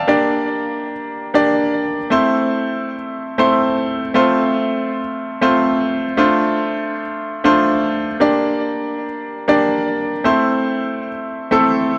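A bright grand piano plays alone with a polished, up-front presence and short sustain, touched by delay and set in a lush hall reverb, moving through Gm, Am, F and Dm7 at 118 BPM in a straight 4/4 pop feel, moody and nostalgic throughout this 12-second cut from a longer piece.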